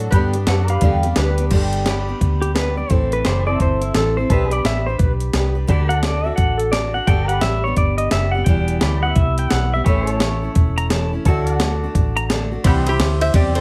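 Sunny and easygoing, this excerpt of honky-tonk and classic country swings along at 172 BPM in G major, with a jangly, detuned upright piano sitting in the background for the opening 1.5 seconds while a metallic, nasal lap resonator guitar plays slide melody at the start and returns at 12.7 seconds. A twangy pedal steel guitar, played with fingerpicks and volume swells, takes a solo from 1.5 to 12.6 seconds over sustained chords from a second pedal steel, with a full-bodied dreadnought acoustic guitar picking accompaniment throughout. Underneath, a dark, round, foam-muted electric bass and a gritty, compressed sampler-style drum kit with a thumpy kick sit up front, all in light reverb.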